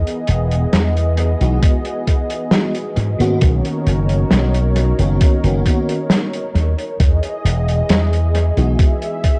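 A punchy, bright slap bass run through an envelope filter sits up front in this nostalgic, faded vaporwave excerpt, moving at a slow 67 BPM in E lydian over Emaj7 and Bmaj9 chords. A thick, detuned sawtooth unison pad with chorus and 12-bit sampler grit holds sustained chords throughout, while a muffled, lo-fi vintage kit with a rolled-off top plays hi-hat and snare through analog delay. A dreamy FM electric piano with a soft pad layer enters at 1.4 seconds, and a thumpy electronic kick re-recorded in a large room joins at 1.6 seconds, all set in an echo-heavy mix with light studio reverb.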